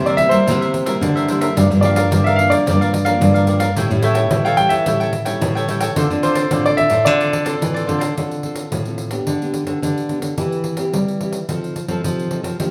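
This samba and choro piece, cut from a longer performance, moves at 109 BPM in 4/4 with a straight feel in D minor, and its mood is yearning yet lively. A warm concert grand piano carries the melody high in its range with a natural tone and deep bass, over a crisp, picked cavaquinho and two fingerpicked nylon-string guitars, one comping chords and the other holding the bass line. The guitars bring a classical, full-bodied character with fresh strings, and the sound of one sits up front, with finger squeak audible. A jingly pandeiro, close and dry and played with hard hands, drives the rhythm from start to finish. The band plays live in one room, bathed in a large studio reverb, as the harmony moves through C7, Gm7, A7 and Dm7. The piano drops out at 7.6 seconds and the cavaquinho at 8.1 seconds, leaving the guitars and pandeiro to carry a new section through G/D, C/E and F7 until the cut at 12.7 seconds.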